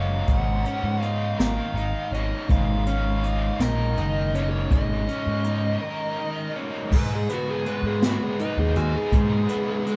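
A fuzz-soaked, compressed lead guitar melody with analog delay rides over a dark, double-tracked overdriven guitar riff colored by harmonic tremolo and a round, punchy overdriven bass, with a brushed drum kit joining at 0.3 seconds with a boomy kick, in this trippy, hypnotic psychedelic rock piece in G# dorian at a slow 54 BPM in 6/8, moving from D#m7 through a break at 5.8 seconds to G#m, where the lead guitar takes a solo from 6.9 seconds, the band playing live together in one room with light reverb and a faint mains hum.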